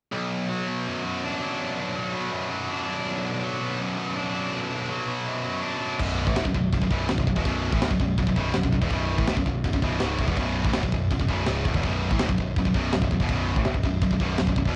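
Epic and heavy, this heavy metal excerpt drives at 164 BPM in B minor, opening with a bright, double-tracked high-gain guitar riff alone, distorted and up front with a cassette-tape grit. At 6.0 seconds a tight metal drum kit with a high-tuned snare, tight kick and crash joins, saturated and rolled-off on top, alongside a growling, overdriven picked bass sitting in the background. The dry home cassette recording, tuned slightly flat at A4 = 437 Hz, gives the whole a raw, lo-fi weight.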